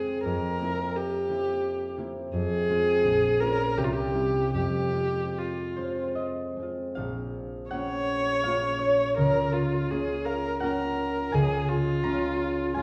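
A bowed viola with a rich, focused tone and vibrato carries a yearning melody over a ringing, thumb-plucked concert harp, the two heard together from the first moment in this solemn romantic classical duo in 3/4. The pulse drifts with rubato between 68 and 88 BPM, and the music, tuned to A4 = 445 Hz, turns from F minor to Bb minor at 7.0 s. Both players sit up front yet are heard from further back in a reverberant recital hall, in a passage cut from a longer piece.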